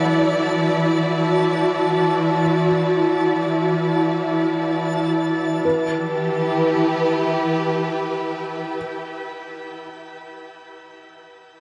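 Ambient in free time, spacious and melancholic, this fragment of a longer piece is bathed in a long, shimmering reverb. A dark, lush string section sits up front with expressive vibrato on sustained chords, while a very quiet felt-muted upright piano plays soft, intimate arpeggios with audible action noise until 11.6 seconds. In the background an analog drone of detuned sawtooth and pulse waves warbles through chorus, and a bright, reversed granular texture swells dreamily until 5.7 seconds, just as the harmony moves from D over E to E minor at 5.6 seconds.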